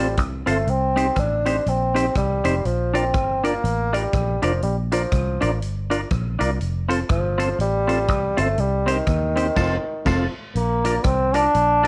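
A mellow, distant bassoon with light vibrato carries the melody over a joyful, swinging ska groove, backed by clean semi-hollow electric guitar, soft flute-like tonewheel organ stabs with chorus vibrato and slapback echo in the background, a dark, round fingered electric bass up front and a big-band drum kit with punchy kick that enters at 0.2 seconds, before a band accent at 9.6 seconds hands off to a brief, punchy trombone solo from 10.6 seconds.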